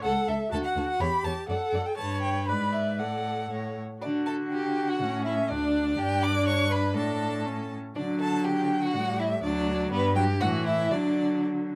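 Light reverb surrounds a dark, warm production in this cheerful, spirited passage, cut from a quick classical-period movement for string quartet in D major, at 122 BPM in 2/4 with a rubato feel and tuning at A4 = 441 Hz. A single up-front, close first violin carries the melody with a warm tone, expressive vibrato and portamento. Beneath it, a clear second violin with light vibrato plays a smooth, even second line, while a clear viola fills in the accompaniment with a smooth, even, vibrato-tinged bowed sound. A rich cello, also placed up front, anchors the bass with smooth, even bowing. The opening phrase moves through tonic, dominant and subdominant harmonies before a second section begins at 4.0 seconds, where a brief unharmonised moment at 5.5 seconds gives way to open fifths and a closing return to D.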